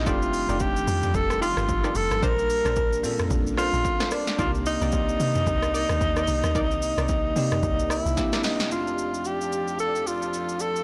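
Swung sixteenths at 111 BPM drive this late-night, deep amapiano piece, with an up-front deep house drum kit supplying a punchy kick, smooth hats, gritty 12-bit sampler texture and a softly clipped snare. A round, dark log drum bass carries the low end until 8.2 s, where a drum fill leads into a new section at 8.7 s. A breathy alto saxophone leads up front with light vibrato, scooped notes and delay, over a bell-like tine electric piano, a mellow string machine of violas with ensemble chorus and sidechain pumping, and detuned sawtooth chord stabs in the background, as the harmony moves from F13 through Bbmaj9 and Cm9 to C9 in a blown-out, overdriven recording with light reverb.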